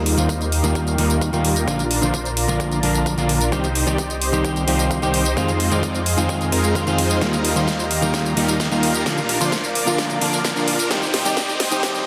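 A huge, euphoric supersaw lead riff with delay, a thick, saturated detuned saw bass with chorus and a barely audible riser open this anthemic festival progressive house build-up, soon joined by a warm, slow-attack supersaw pad in the background, a dark, slightly broken-up fingered electric guitar with delay, an up-front big-room drum kit with a huge snare, metallic hats and tambourine, and a faint, punchy electronic kick, while sidechain pumping drives the pad, lead, bass and guitar, a filter sweep runs through the whole passage, and a drum fill arrives at 7.2 s, set in a lush hall reverb and a dense, heavily limited master.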